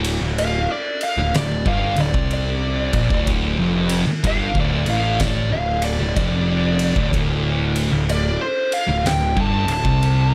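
Stoner and doom metal in D minor, this brooding, hypnotic excerpt crawls at 62 BPM in 4/4 with a 65% swing on the eighth notes, resting on a single D minor chord. Two thick fuzz guitars grind out a low riff from the start, one warm and one dark, both distorted and picked and sitting in the background. Up front, a fuzz picked electric bass adds overdriven, tube-saturated weight deep in the low register. An oversized, low-tuned acoustic drum kit pounds out kick, snare and ride with a punchy kick, fat snare and dark cymbals, its gritty, saturated sound filled by a bright, pumping stone room. At 0.4 seconds a dark fuzz lead guitar enters up front with a high solo melody, colored by wah, distortion and slapback echo. The whole is set in a small room with light reverb.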